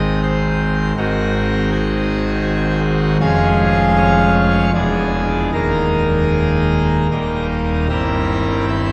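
A full pipe organ opens on an Ab chord and plays this serene, majestic chorale-style classical passage alone, moving in a rubato 3/4 at about 78 BPM through Ab7, Db/F and an E7 before settling on Eb and then C7/G at 7.9 seconds. The baroque-voiced registration sits up front, its bright mixtures and audible chiff spanning from a deep Eb1 up to E5. A long, wet cathedral reverb of 5.7 seconds surrounds it, and the room is heard from further back in the space, in this short cut from a longer work.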